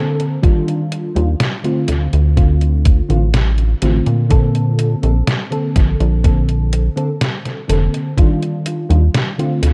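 An echo-heavy, lightly reverberant mix with a digital sheen frames this faded, dreamy vaporwave excerpt in Bb major, drifting at 62 BPM in a straight 4/4. A mellow FM electric piano, round and warbling with cassette-tape wear, analog chorus and tape echo, opens at 0.0 s over Ebmaj9, Dm7 and Bbmaj9 chords, joined by a detuned 8-bit drum machine's hi-hat and medium-tuned snare in small-room ambience, plus a thumpy, up-front electronic kick from 0.4 s. A glossy, chorused synth bass enters at 1.2 s, its pulse-wave and sawtooth tone shaded by ring modulation and a filter pluck.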